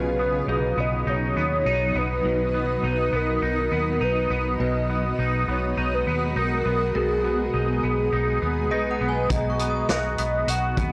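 A velvety, wave-folded synth lead carries the melody with chorus, analog delay and vibrato in this dreamy, floating dream pop excerpt at 102 BPM in B major. A twangy, clean electric guitar plays arpeggios through analog chorus and delay over a blurred, evolving granular pad, a dark, foam-muted fingered bass and a ringing, inharmonic FM chime that enters in the background at 0.5 seconds, as the chords move from Bmaj7 to G#m7/B. A vintage drum kit with hi-hat, punchy kick and snare arrives at 9.3 seconds, all within a dry, gritty small-room sound with transformer saturation.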